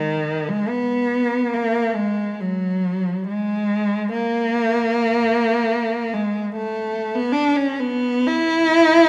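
A recital hall's reverb, with a 1.8-second decay, surrounds a single cello that sits up front in the sound. This is a brief classical fragment cut from a longer piece, a free and expressive passage for unaccompanied cello in a serene, nostalgic mood. The bowed line moves at roughly 59 to 76 BPM in 4/4, with a rubato feel that lets the phrasing breathe, and the instrument is tuned to A4 = 439 Hz. The warm tone carries vibrato, soft attacks and sliding portamento, staying within a range from D#3 to E4. The lone player holds the stage for the whole 9.1 seconds.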